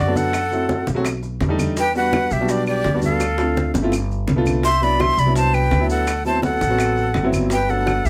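Sunny and danceable, this short Afro-Cuban jazz cut in G major moves at a straight 167 BPM in 4/4, with a breathy, bright jazz flute carrying the melody up front over an airy, tongued, unsteady second flute with vibrato, a woody, thumpy pizzicato upright bass, open baby grand piano chords running from F#m7b5 through Cmaj9#11 to Gmaj9, and thick-skinned congas, saturated bongos, claves and grainy maracas in the background, a drum fill at 3.2 seconds, all in light reverb.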